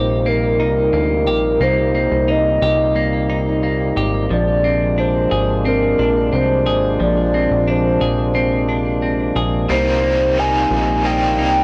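Melancholic and ethereal, this dream pop excerpt sets a hollow, woody clarinet-like synth lead with chorus and vibrato over sustained chords from a French horn section with light vibrato, clean picked arpeggios on a semi-hollow electric guitar touched with subtle chorus and tape echo, and a punchy, up-front, filter-plucked analog bass, before a bright, overdriven, double-tracked stack guitar with tremolo joins at 9.7 s, the mix sitting in light reverb and transformer saturation.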